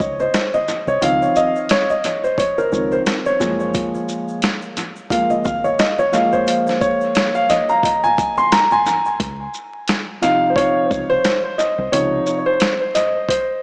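A lazy swung groove in 4/4 drives this relaxed, cool jazz-hop cut, taken from a longer hip hop piece. The boom bap sampler-style kit sits up front, compressed, pitched down and gritty, with a thumpy kick, a medium-tuned snare, hi-hat and shaker, all touched by tape echo. A dark grand piano carries the solo throughout, its mellow, smooth, vintage tone and long sustain floating on tape echo over rich major-ninth harmony, including a rootless voicing. Beneath it, a deep dub fingered electric bass plays round and punchy with a foam-muted, direct and amped sound, while bright, band-limited tube shaker and congas with soft hands sit in the background. The percussion drops out at 9.2 seconds as the passage repeats, and the bass stops at 12.2 seconds. An echo-heavy mix, a moderate echo chamber reverb, vinyl crackle and a small speaker sound give the whole recording a hazy, lo-fi character.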